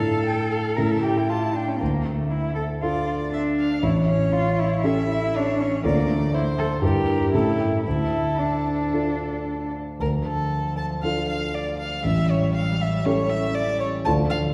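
Heard from further back in a reverberant concert hall, this lively, cheerful excerpt from a quick classical-period piano trio movement moves with a flexible, rubato feel. A single bowed violin carries the melody with a rich, smooth, even tone and vibrato, while a rich-toned cello sings a second line beneath it with a soft attack, expressive portamento and vibrato. A dark, mellow concert grand sits up front with deep bass, supplying the accompaniment throughout.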